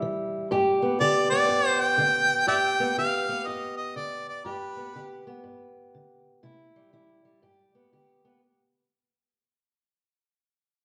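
Swaggering and rollicking, this short acoustic country blues passage is cut from a longer piece and has a loose swing feel. A fingerpicked steel-string parlour guitar sits up front, its tone dark and boxy, and provides the accompaniment across the full 8.4 seconds, moving between C and G. At 1.0 seconds a mellow harmonica enters with the melody, played solo in a jazz style with light vibrato, tongue slaps, scooped notes and a smooth top end. The harmonica drops out at 5.2 seconds. Both parts sound up front, set in the lingering reverb of a recital hall or church, and the whole passage fades out from start to finish.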